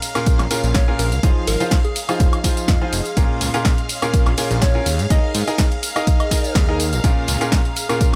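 A punchy analog drum machine drives this piano house excerpt at 124 BPM in 4/4, its tape-warm snare joined by hi-hat, ride, tambourine and woodblock, while an up-front electronic kick lands from 0.3 seconds and a very quiet, crisp fusion kit adds airy hi-hat and high-tuned snare beneath. The mood is bittersweet yet energetic, moving through Bbm7 and Fm7 in Bb minor with a light swing on the sixteenths. A bright, brilliant grand piano carries the riff from Bb2 to F5 with long sustain, pumping against the kick alongside a fat, detuned sawtooth bass whose filter sweeps as it holds low notes from Eb1 to Ab2. Behind them, a shimmering vintage string machine holds sustained chords through ensemble chorus and sidechain pumping, and a very quiet, ethereal pad drifts beneath from the start with a slow attack, phaser and its own built-in reverb. A round, gentle FM lead with a warbling cassette tape character plays a keys-like melody between Ab4 and F5, colored by chorus and digital delay, in a dry, close mix.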